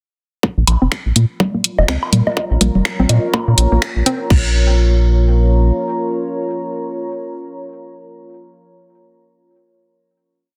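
Clinical and quirky, this short minimal techno piece in Bb minor runs at 124 BPM in 4/4, with a 59% swing on the sixteenths giving it a loose, nodding gait. From 0.4 seconds a build-up sets in over a Bbm chord: a tight, up-front electronic kick pounds four-on-the-floor while a garage kit adds programmed closed hats, finger snaps and a crash, and woodblocks and a low conga scatter clicks and blips in cross rhythm. A hollow square-wave pluck repeats a 9-step loop that drifts against the bar, its mellow, detuned tone coloured by chorus, cassette tape grit, tape echo and sidechain pumping, with a filter sweep on this synth arpeggio sound running to 4.3 seconds. Underneath, a rubbery, resonant square bass rolls through a bouncy staccato groove, also pumping against the kick. A deep, warbling, vintage pad fades in at 1.7 seconds with chorus and its own reverb, slowly shifting chords and carrying the final chord through to 8.3 seconds. 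The mix sits in light digital ambience with a dense, heavily limited modern master.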